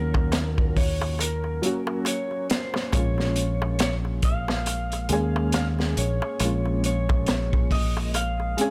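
A slide guitar, a felt-muted upright piano and a fingered electric bass open this smoky, cinematic trip hop excerpt together, with a crunchy breakbeat kit and a darbuka joining at 0.1 seconds. At 69 BPM in 4/4 with a swung sixteenth-note feel, the piece sits in Bb minor, moving from Ebm7 to Bbm7 at 2.9 seconds. The slide guitar carries the melody between Bb4 and F5 with a slightly broken-up, compressed tone and tape echo, while the soft, vintage piano plays a muted, intimate accompaniment through tremolo and tape echo. The punchy bass, direct and amped, holds the low end between Bb1 and Eb2 up front alongside a gritty, saturated kit with a high-tuned snare, punchy kick, hi-hat and a rolled-off top. The clay-shell darbuka, played with soft hands and heard close and dry, adds quiet detail within a small room ambience until the bass and darbuka stop at 8.5 seconds.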